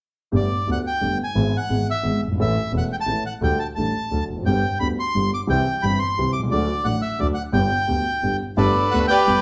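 Passionate and playful, this rubato tango in 3/4 moves at 175 BPM in G major, tuned to A4 = 441 Hz. A reedy, dark bandoneon carries the melody up front over a deep-bassed concert grand piano with short sustain and a single bowed double bass, focused and clear with vibrato. A woody violin section slips in behind at 8.6 s as the chords circle back to Gadd9, all in a wet room sound of a band playing live together.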